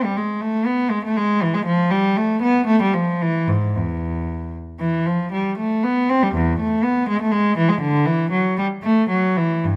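In a flexible, rubato 3/4 at 111-123 BPM, this solemn, flowing excerpt from a baroque-style suite movement in A minor features a single bowed cello playing alone from 0.0 to 9.8 s, ranging from E2 up to C4. The cello has a gut-string, period-style tone, reedy in body with a smooth top, and sits up front in close, detailed miking. A moderate scoring-stage reverb with a 1.6-second tail surrounds it.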